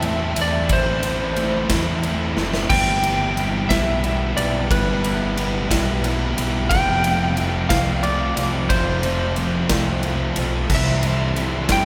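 A dark, compressed electric slide guitar carries the melody over two fuzz-drenched guitars, one dark and one bright, a punchy overdriven fingered bass and a big, up-front rock kit with bright cymbals and a drum fill at 2.4 seconds, moving from Am through F to C6, where a distant, woody string section enters very quietly at 10.7 seconds, all bathed in a cathedral reverb that gives this euphoric, hopeful post-rock excerpt in 6/8 its vast, churchlike space.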